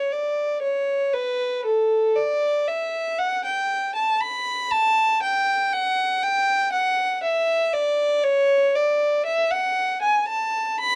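A classical, baroque-style suite movement for unaccompanied violin, flowing and dance-like in D major at 59 BPM in 3/4 with a rubato feel, tuned to A4 = 441 Hz. A single bowed violin plays alone and up front throughout the 11-second excerpt, ranging from A4 to B5 with a dark, smooth, even tone, vibrato and a smooth top end. Light reverb surrounds it in a warm, dark production.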